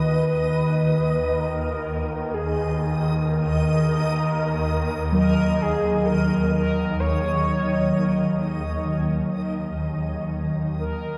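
This is a desolate, cavernous dark ambient drone in Eb minor, in free time, cut from a longer piece and bathed in lush hall reverb. A swarming, detuned drone fades in up front while a reversed, swelling granular texture hovers high and bright. A close-miked quartz singing bowl rings out pure, slowly beating arpeggios through analog delay until 10.8 seconds, as a round, horn-like synth lead carries the melody with chorus and vibrato on through the fade-out from 8.3 seconds.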